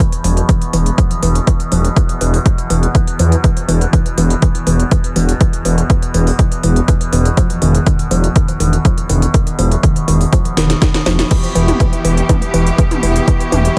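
A straight 4/4 pulse at 122 BPM drives this hypnotic, propulsive melodic techno in E phrygian, built on a punchy analog kick up front and a layered drum kit with a cracking snare, smooth hats, crash, and toms, with a drum fill at 10.6 seconds. A menacing, saturated detuned saw bass with a filter swell pumps beneath a woody, wave-folded pluck playing arpeggios through chorus and tape echo, while a nasal, resonant drone with moving overtones sustains underneath as the harmony shifts from E5 to B/E and then Em. At 11.3 seconds a lush, bowed studio string section enters with sustained chords, all set in light reverb with a heavily compressed, radio-like sound in this short cut from a longer piece.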